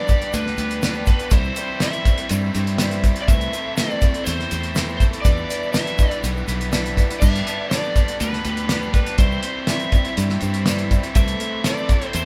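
A straight 4/4 groove from a thuddy, cloth-damped drum kit up front with a fat snare and dark cymbals, a punchy fingered electric bass and a grainy egg shaker in the background carries this dusty, wistful folk and heartland rock fragment, where a double-tracked, overdriven electric guitar riff and a boxy, picked swing-style acoustic guitar support an overdriven slide guitar melody, while a very quiet, reedy tonewheel organ with key click and a slow rotary speaker holds sustained chords, the band playing live together in a stone room with moderate reverb.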